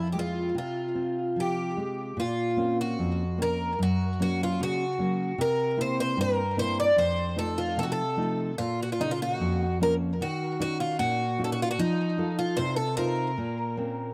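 A passionate, mournful fado-style ballad in a rubato 2/4, where a bright, shimmering, octave-doubled twelve-string acoustic guitar carries the melody with tape echo over a deep, warm nylon-string guitar accompaniment, both up front in a dry, close 1970s-style studio sound with light reverb, moving through chords such as Bbmadd9, C7 and Ebm7 in this 14.1-second cut from a longer piece.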